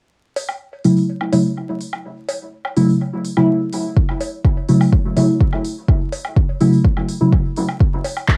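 Hazy, hypnotic dub techno in a straight 4/4, where deep, warbling chord stabs with chorus, phaser, dub echo and sidechain pumping sit up front over a single F#m7, alongside handclaps and smooth hi-hats, echoing cowbell and woodblock, and a punchy electronic kick that enters at 4.0 seconds, all colored by cassette tape, vinyl crackle and a small room.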